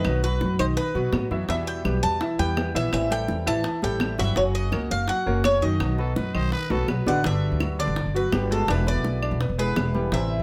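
This Latin piece in the Cuban son and guajira tradition has a warm, danceable mood, moving at a brisk 167 BPM in a straight 4/4 in E minor, and is cut from a longer performance. An up-front Cuban tres carries the melody with a picked, metallic ring from its double strings, some of them octave-doubled. Beneath it, a dark, thumpy upright bass on gut strings is plucked pizzicato and sits up front. A boxy, fingerpicked swing-style guitar with audible finger squeak and a clear but worn grand piano playing short-sustained arpeggios fill out the harmony. Round, low-tuned bongos and woody claves set in the background keep the percussion going, each sounding as if in a small room. A raspy, growling trumpet with light vibrato breaks in briefly from 6.0 to 7.2 seconds alongside a drum fill, leading into a second section at 7.2 seconds where the chords move from Gmaj7 to E7, all under a moderate studio reverb.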